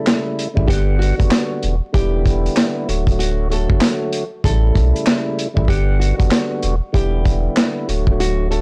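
A swung boom-bap hip-hop groove at 96 BPM in 4/4 comes from a vintage drum kit, its tight kick, medium-tuned snare, hi-hat and handclaps sitting up front with a small-room, rolled-off sound from 0.1 s, joined at 0.6 s by a deep, round sine sub bass. From the very start, a fat tonewheel organ turns through a slow rotary speaker on chords cycling A7, Gmaj7, Em7 and D, while a fingerpicked classical nylon-string guitar carries a melody set low in the mix, colored by slapback echo and plate reverb. The recording is blown-out and overdriven with vinyl crackle, giving this dark, tough fragment of a longer piece a gritty edge.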